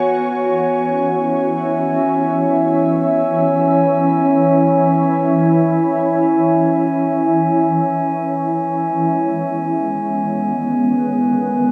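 A shimmering ambient pad sits up front for the full 11.7 seconds, holding sustained chords from D#3 to E5 with a slow attack, long release and an octave-up shimmer, its detuned unison voices thickened by chorus and a grainy, wave-folded edge. Above it, and quieter in the mix, a glass harmonica holds a single pure, glassy G#5 throughout, its smooth, slow-blooming tone adding a quiet ethereal texture. A filter sweep runs across the pad for the whole passage, and the harmony moves from E6 to G#m at 8.6 seconds. The ambient piece floats in free time with a spacious, reflective mood, drenched in a cathedral reverb with a 6.8-second tail. The dreamy mix carries the soft grain of cassette tape, and the passage is cut from a longer piece.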